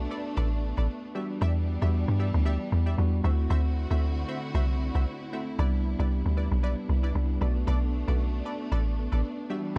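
A dark, warm production with little reverb frames this short, soulful amapiano cut, taken from a longer piece and moving at 115 BPM in 4/4 with a gentle 16th-note swing. Up front and loudest, a woody log drum bass with a fast, punchy attack and a noisy edge carries the low end from the start, each hit decaying away. Beneath it sits a worn, slightly out-of-tune electric piano with a mellow, direct tine tone, while a lush studio string section holds smooth, bowed chords with vibrato. Faint sawtooth chord stabs enter at 0.1 seconds, bright and detuned with a filter sweep, colored by chorus and delay. The deep harmony moves from Bm7 through Em7, D9 and Cmaj9 before returning to Bm7 at 7.4 seconds.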